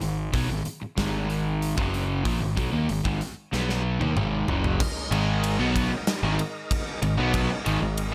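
Aggressive and menacing, this short hard rock excerpt drives along at 94 BPM in a straight 4/4, sitting on a G# minor chord. Up front, a gated 80s drum kit in a big, airy room pairs a tight kick and medium-tuned snare with bright cymbals, and a growly, punchy fuzz bass fingered low in its range. Behind them, a crunchy overdriven guitar and a hollow-body semi-hollow guitar play the riff together, both picked with a warm overdriven edge. After a drum fill from 3.5 to 4.8 seconds, the second section brings in a thick, gritty tonewheel organ holding sustained chords through a slow rotary speaker and chorus vibrato. A double-tracked distorted guitar with a tight, bright tone joins the riff at 5.1 seconds, and the whole is set in a light reverb.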